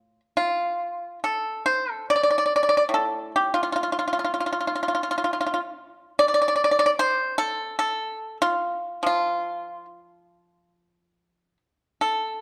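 A dark recording in a moderately reverberant recital hall, whose 1.5-second decay frames a single pipa placed up front. This short passage of Chinese traditional solo music moves in free rubato at around 68-76 BPM in 4/4, drawing on the A jue mode in a longing, contemplative mood. Played with fingerpicks, the pipa sounds dry and percussive, ranging from A2 to D5 across its 12.4 seconds.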